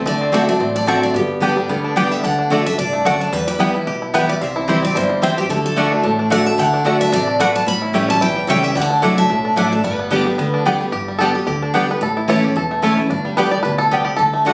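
Swinging eighths at 221 BPM in 4/4 drive this lively bluegrass passage in G major, cut from a longer piece, where a twangy, fingerpicked banjo and a bright jumbo lead guitar carry the melody over a full-bodied dreadnought guitar's accompaniment with audible finger squeak, a dark, thumpy gut-string upright bass and warm double-string mandolin stabs, until the lead guitar drops out at 10.6 s and the banjo takes a solo from 10.9 s, the whole group captured on a phone in the room with moderate studio reverb and compression.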